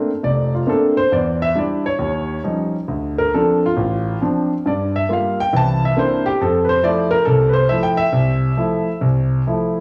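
Swinging and intimate, this short solo jazz fragment cut from a longer piece features a concert grand piano playing alone for its full 9.8 seconds with a rubato, swung feel. The piano sits up front with a natural tone, deep bass and audible action noise, moving through lush extended chords from Bbmaj9 to a resolving Fmaj7. Cassette tape colours the home-recorded sound, and a moderate spring reverb gives the room a soft halo.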